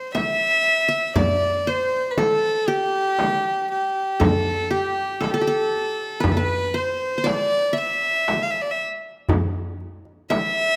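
Arabic maqam ensemble music in C maqam ajam, this stately excerpt moves at 118 BPM in a straight 10/8, tuned to A4 = 436 Hz. A violin carries the melody up front, its soft attack, airy sul tasto bowing and pure, floating tone given a touch of slapback echo. Beneath it a qanun plays a second line in a similar register, its fingerpicked triple strings sounding bright-edged. A deep, band-limited frame drum with a vintage character sets the pulse from the start, and a large metal-shell darbuka, struck with soft hands, joins at 1.2 s. The ensemble sits in a moderate recital hall with close, detailed microphones, giving the whole a clear yet spacious, stately sound.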